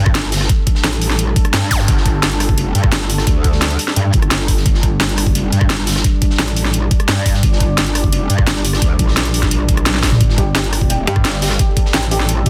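An overdriven, knocking electronic kick drives this aggressive, mechanical dark technical drum and bass excerpt, joined by a cracking, up-front kit with bright hats and a gritty breakbeat layer in the background, while a metallic wobble bass with tube saturation and chorus pumps beneath a deep, moody ambient pad on a Gsus2 chord, an impact opens at 0.0 s, a drum fill lands at 9.9 s, and a soft felt-muted upright piano enters with delayed arpeggios at 10.4 s.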